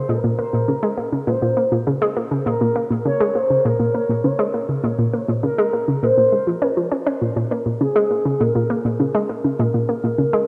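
Ambient excerpt at 101 BPM in Bb minor, mysterious and expansive, where an up-front, round, nasal analog pluck riff with chorus and delay rings from 0.0 seconds under a smooth, dark synth lead melody with vibrato, set in a three-second plate reverb and an echo-heavy mix over a single Bbmadd9 chord.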